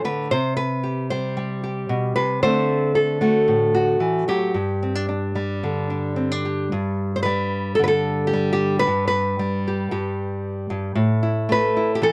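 A straight, unhurried 4/4 pulse at 113 BPM carries this short folk fragment, cut from a longer piece and played on a single fingerpicked nylon-string guitar in G major, tuned slightly under standard pitch. The mood is peaceful and gently warm, with the guitar ranging from G2 up to C5. Its tone is bright and small, sitting up front in the sound with a light reverb around it. The chords move from C5 through D7 and G5, and a second section opens at 6.7 s on a G chord before passing through a chordless stretch and settling on A5. The whole recording carries the worn character of old cassette tape, with a warbly pitch drift that lends the playing a faded, homespun feel.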